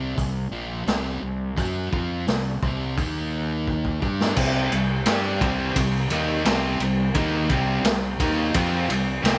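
Classic rock with a sunny, driving straight feel, cut from a longer piece, opens on a dark, overdriven guitar riff sitting in the background while a fuzzed, fingered electric bass supplies the low end beneath it. The raw garage drum kit joins at 0.2 seconds, up front and saturated, with a punchy kick, a medium-tuned snare, and gritty cymbals whose top end is rolled off in a small-room sound. Over C5, Eb5 and G5 power chords, a drum fill from 3.7 seconds leads into a new passage at 4.4 seconds. There, a cranked stack guitar adds a second picked, overdriven riff with a warm tone, and a very quiet tonewheel organ holds bright, shouting sustained chords with key click and a slow rotary speaker. A light reverb surrounds the whole band.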